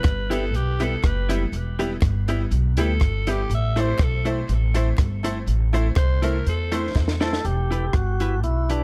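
This is a dry ska recording with little reverb, cut from a longer piece and carrying a driving, energetic mood in a straight four. A raspy, gritty alto saxophone leads the opening with a forceful, pop-style solo with light vibrato and a dub echo trailing its phrases. Meanwhile an up-front, woody upright bass and a compact cocktail drum kit, with a dark, smooth sound, a high-tuned snare, punchy kick, hi-hat and rim click, anchor the groove. A clean, compressed electric guitar with lush chorus supplies picked accompaniment, a jangly, metallic tack piano adds bright percussive stabs, and a very quiet, crisp group handclap sits underneath. The harmony moves from E minor to A minor and back. A drum fill at 7.0 seconds closes the saxophone's solo, and at 7.2 seconds a full, lightly overdriven tonewheel organ with vibrato and its own dub echo takes over the melody for the final stretch.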